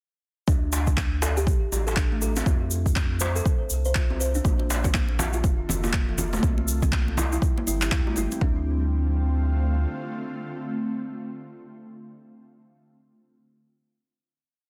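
A woody, plucked kalimba repeats a 16-step arpeggio with dub echo and sidechain pumping over a deep, round sub bass, a four-on-the-floor electronic kick, handclaps, a grainy egg shaker and a cracking djembe in this driving, spiritual afro house piece in D minor at 121 BPM. Ringing congas join at 4.6 seconds, and an ethereal, detuned pad with chorus and phaser enters at 5.2 seconds and sustains a final Dm7 chord from 8.4 seconds to the end.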